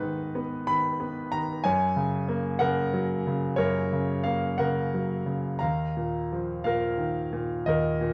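A clear concert grand piano opens the 8.1-second fragment, a lyrical classical solo in 6/8 at roughly 58-63 BPM, played with rubato across a melancholic, dark progression from Abm to Gb and on to Ebsus2. The instrument sits up front with a deep, smooth bass and a vintage character, ranging from Eb2 to Cb6 under light reverb. The whole recording carries the worn, warbling pitch drift of old cassette tape, and it is cut from a longer piece.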